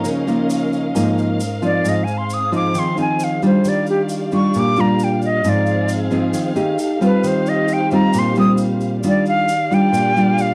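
A dry, close 1970s-style studio sound frames this sunny, sophisticated bossa nova cut from a longer piece, moving at 134 BPM in Eb major over chords such as Db69, Ebmaj9 and F9. An airy, metal-toned jazz flute with vibrato and a touch of slapback echo sits up front and carries an expressive solo through the first 9.0 seconds, beside a woody, full-bodied fingerpicked nylon-string guitar with old strings. Underneath, a dark bowed studio string section holds smooth sustained chords with portamento, while a grainy, bright tube shaker sounds distant, as if from a large room.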